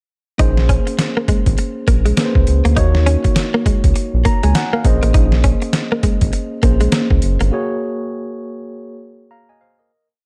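New jack swing R&B in Bb minor at 101 BPM, slick and confident, with a hard-swung, gritty sampler-style drum beat (thumpy kick, fat overdriven snare, hi-hat) up front beside a round, deep synth bass that bounces through ghost notes and chromatic approach notes over Bbm9, Ebm7 and Ab9sus4. A mellow tine electric piano holds chords with grace notes and adds a short fill at 4.0 seconds, while a clean, direct-recorded electric guitar picks a muted single-note riff through analog chorus. At 7.5 seconds drums, bass and guitar stop, leaving the electric piano alone in a fading break, all in a dark, dry mix.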